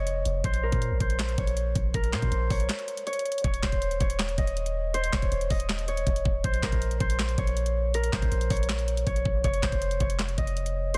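A mellow, ringing Celtic harp sits up front, fingerpicked and filtered with digital delay, carrying an eerie melody over a Bb minor trap beat at 160 BPM in a half-time feel. Beneath it, a deep, boomy 808-style bass with a noise layer and fast, decaying attack locks in with a produced electronic kit of knocking kick, sharp snare, handclaps and bright hats, with a break at 2.7 seconds before the next section opens at 3.4 seconds. The chords move from Bbm to Cm/Eb and back before landing on F5, all in a dry, dense, heavily limited mix that hits hard in this short cut from a longer piece.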